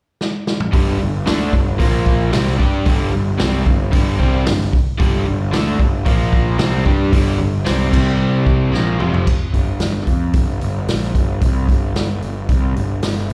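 A double-tracked, overdriven electric guitar riff with slapback echo drives this gritty, brooding classic rock excerpt over punchy fuzz bass and a vintage drum kit with a rolled-off top, heard through a club PA with small-room reverb, opening on a drum fill at 0.2 s, with the guitar dropping out at 9.3 s so the bass and drums carry on to the cut at 13.3 s.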